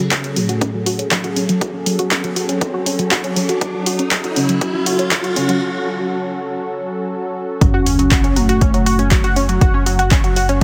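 A steady, straight 4/4 pulse at 120 BPM drives this dark, dramatic melodic techno excerpt in F# minor, built on an overdriven electronic kick and a punchy analog drum machine with handclaps and hi-hat, both re-recorded in a large room. Over a build-up with filter sweeps, a round, octave-layered lead with vibrato, tape echo and phaser carries the melody, while a tight, detuned sequenced synth plays plucky arpeggios through delay and a lush, nasal unison pad holds sustained F# minor chords, all pumping against the kick as a background riser climbs toward a break at 5.6 s. At 7.6 s the drop lands with an impact and sub drop, the pad stops, and a punchy sawtooth sequencer bass enters on F#1 beneath a huge ambient reverb and a heavily compressed, radio-like sheen.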